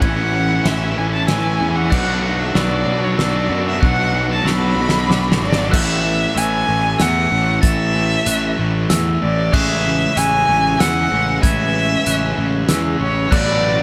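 Post-rock at 95 BPM in 3/4 and A major, hopeful and cinematic, where a woody, vibrato-laden bowed violin carries the melody up front through digital delay over a punchy, round fuzz bass, a thick distorted fuzz guitar riff, a loose small-room drum kit with dark cymbals and a fat snare, twangy pedal steel chords with volume swells, and a bell-like glockenspiel ringing arpeggios in the background, while a very quiet twelve-string electric guitar and an overdriven hollow-body riff guitar play through the build-up and its drum fill before both stop at 5.7 seconds as the harmony opens onto Asus2.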